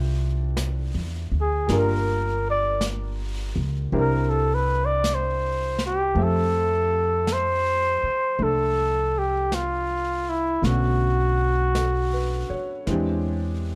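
Jazz ballad at a slow, swung 54 BPM in F major with a late-night, romantic mood, where a clear grand piano and a woody, growly pizzicato upright bass play from the start, a brushed drum kit joins at 0.6 seconds, and an up-front, breathy trumpet with scooped notes and a mellow, plate-reverbed tone carries the solo melody from 1.4 seconds over chords moving from Fmaj9 through Gm7 and C9 to a closing turn of Bm7 and E7alt, heard in a dark club ambience.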